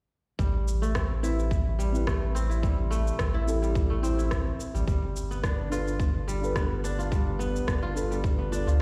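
Round analog bass sits up front in this short cut from a longer organic downtempo piece, its deep, nasal tone thickened by tube saturation and pumping against the sidechain, moving between G1 and D2. The mood is warm and mystical, at 107 BPM in 4/4 with a light swing on the sixteenths, in A minor, as the harmony shifts from Am7 to G7 at 4.9 seconds. A fingerpicked kora plays ringing, crisp arpeggios through tape echo from 0.4 seconds, while a soft, detuned, wave-folded chord stab arrives at 1.2 seconds with chorus, tape echo and its own sidechain pumping. Underneath, a tight electronic kick drum runs from 0.4 until 8.4 seconds alongside a produced electronic cabasa and rim click, both kit parts carrying a tape-warm character and re-recorded in a small room. The whole mix is heard through light reverb, played back on a big sound system in a bare room with a large studio reverb.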